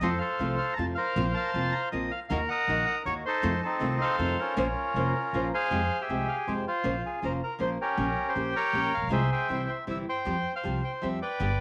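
The bandoneon, upright bass and nylon-string guitar all begin together at the start of this tense, passionate tango excerpt, set in 3/4 at 158 BPM with a rubato feel. The bandoneon carries the melody up front, its reedy, vintage, band-limited tone touched by a slapback echo. Beneath it the nylon-string guitar supplies fingerpicked classical accompaniment with a warm acoustic voice, while the upright bass plays pizzicato on steel strings with a woody sound. The music sits in Bb harmonic minor before moving to F harmonic minor at 5.7 s, where a new section begins, and its harmony passes through chords such as Ebm, Bbmadd9 and Gdim/Bb before settling on Fsus2. A moderate spring reverb gives the trio a resonant room around them, and the piece is cut off at 11.6 s as part of a longer work.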